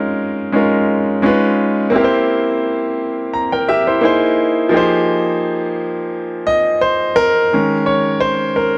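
Silky and bittersweet, this short soul excerpt, cut from a longer piece, unfolds at 86 BPM in 4/4 with a light swing on the sixteenths, set in F minor. A bright grand piano carries the whole passage alone, its brilliant, natural tone placed up front and ranging from Eb3 to Bb5. The harmony moves through rich colours, passing from Db6 and Db9 to C7 and an altered C7 before settling on Fm11. At 7.5 seconds a new section begins on Eb7sus4, and the piano holds the spotlight through to the close at 8.8 seconds. Light reverb gives the playing a gentle sense of space.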